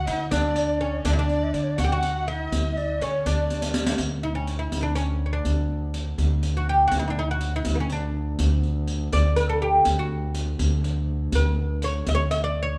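Warm and passionate, this Persian modal ensemble piece in 6/8 is cut from a longer performance, led by a bright, woody, fretless plectrum-plucked oud up front over a thumpy, gut-strung pizzicato upright bass and a soft-handed riq whose dark jingles sit at a distance. At the opening, a breathy ney with rolled-off highs and an expressive, distant bowed violin section carry a second line until 3.8 s; after a drum fill, a bowed double bass enters at 4.0 s with a smooth, even drone. Moderate recital hall reverb gives the ensemble a spacious glow.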